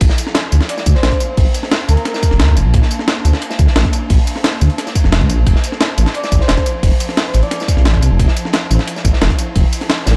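Warm and uplifting, this liquid drum and bass excerpt moves at 176 BPM in straight 4/4, opening on a drop in Bb lydian where a Bbmaj9 chord gives way to Fmaj7 at 5.5 seconds. A deep, rumbling detuned saw bass sits up front with a beating, sustained tone, while an ethereal, airy pad holds mellow chords in the background, its ensemble chorus, built-in reverb and sidechain pumping giving it a gently breathing motion. The rhythm is built from three layers: a punchy, layered electronic kick, a compressed, pitched-up sampler-style breakbeat kit with a high-tuned snare, crash, hi-hat and tambourine, and a saturated acoustic breakbeat kit with dark cymbals, a medium-tuned snare, ride and hi-hat, high-pass filtered and rolled off at the top. A soft, breathy flute-like synth lead floats in twice, first at 0.7 seconds and again at 6.1 seconds, carried by lush chorus and tape echo. The whole mix has a dark, studio-reverb sheen that keeps the grit of the drums cushioned.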